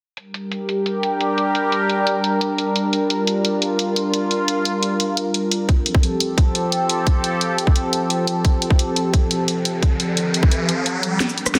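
A straight 4/4 groove at 174 BPM drives this dark technical drum and bass passage in G minor, cut from a longer piece and carrying a futuristic, mechanical mood. The up-front kit pairs a cracking snare with hi-hat, rim click and cabasa, the hats, snare and percussion each run through a low-pass filter and set in studio reverb. At 5.7 seconds a tight, overdriven electronic kick joins, sitting loudest in the mix, before it drops out at 10.5 seconds. Over this, a sweeping, airy sawtooth pad holds sustained chords from Gm to F, its detuned, resonant tone carrying a noise layer, slow attack, long release, filter swell, chorus and sidechain pumping. An electronic riser enters at 9.3 seconds, and a brief drum fill closes the passage, all within a moderate plate reverb and a dense, heavily limited modern master.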